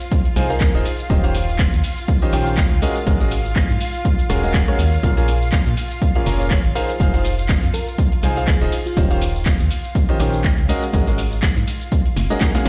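Smooth bowed violin chords pumping to the sidechain open this bittersweet, soulful piano house cut at 122 BPM alongside a punchy analog drum machine of handclaps, hi-hat, rim click, shaker and snare, joined by an up-front electronic kick and then, from 0.4 seconds, a brilliant vintage grand piano riff with digital delay over a hollow, dark, organ-like FM bass, while a sparkling bell-like FM electric piano with chorus and tremolo drifts in the background briefly at 0.5 seconds and again between 6.3 and 9.0 seconds, the whole mix sounding as if played on a big sound system in a bare stone room before a drum fill at 12.2 seconds.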